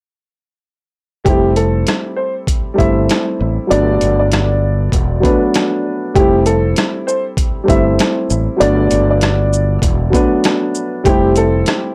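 Confident and nostalgic, this short boom-bap hip-hop excerpt rides a swung 98 BPM groove in 4/4, cycling between Fmaj9 and Gmaj7 across two sections that turn over at 6.2 seconds. A woody, slightly detuned upright piano carries the melody in a high register with audible action noise and a tape echo trailing its phrases. Beneath it, a dark concert grand supplies mellow, short-sustained chords with a vintage, cassette-tinged smoothness. A fretless electric bass sits low and punchy with a subtle chorus, while a pitched-down sampler-style kit of thumpy kick, medium-tuned snare, rim click, hi-hat and shaker pushes gritty and compressed at the front. All four parts enter together around 1.2 to 1.3 seconds, and the dry, gritty hardware sound keeps the mix close and intimate.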